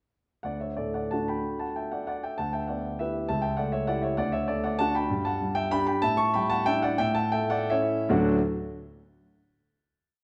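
A wet recital-hall reverb surrounds this short classical piano waltz, placing the instrument up front in an airy, open space. A warm grand piano plays alone from 0.4 s, carrying a sparkling, graceful tune in thirds over sparse bass notes and held chords, in a lilting three-beat metre shaped with free, rubato timing. Its harmony moves through a handful of chords before gathering toward a resolution. From 5.6 s the playing slows, and at 8.1 s it settles onto a final chord that rings out in the hall. The whole piece is a brief, elegant miniature, complete in under ten seconds.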